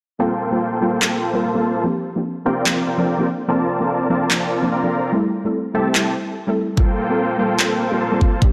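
A thick, detuned supersaw riff carries this lush, emotional future bass excerpt at 146 BPM in a swung half-time feel in G dorian, pumping against the sidechain through a low-pass filter and delay above a soft, round pluck that moves under a filter sweep with chorus and delay, while overdriven handclaps enter at 1.0 s and a knocking kick arrives at 6.8 s, all framed by a hall reverb as the chords move from Gm11 through C9sus4, Bbmaj9 and Am7 back to Gm11.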